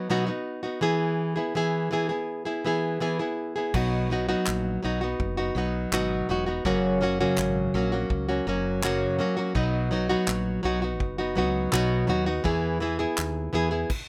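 Acoustic pop with a carefree, sunny mood, moving at 83 BPM in 4/4 with a straight feel in B major. A fingerpicked nylon-string guitar opens alone, sitting up front with a warm, small tone as it carries the accompaniment over chords of B and E. At 3.7 seconds a woody fretless electric bass and a natural country drum kit enter together, the bass round and hollow-bodied, the kit heard as crash cymbal, handclaps and a punchy kick in a small-room sound. From there the harmony cycles through B, F# and back to B before reaching E. The guitar stays the most prominent part, with the bass and drums set lower beneath it and light reverb around the whole mix. The music stops at 13.9 seconds, as this is a short cut from a longer piece.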